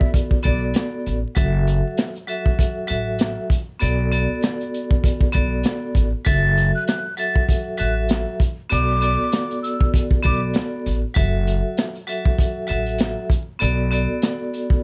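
A crunchy breakbeat kit sets a swung 98 BPM boom-bap groove in 4/4, its tight kick, rim click, hi-hat and medium-tuned snare sounding saturated and gritty with a rolled-off top. This gritty, tough hip hop excerpt sits in F# minor, alternating between Bm7 and F#m7 chords. Up front, a pizzicato upright bass with gut strings gives a woody, thumpy low end, while a vibraphone played with hard mallets rings out metallic accompaniment through a fast motor vibrato and a band-limited, vintage cassette-tape character. A breathy, mellow silver concert flute, close-miked with a straight, tongued tone that is a little unsteady, offers a brief phrase at the opening, then returns at 6.3 s to carry the melody until 10.4 s, with a slapback echo trailing it. Light reverb and a layer of vinyl crackle wrap the mix in a dusty, lo-fi patina.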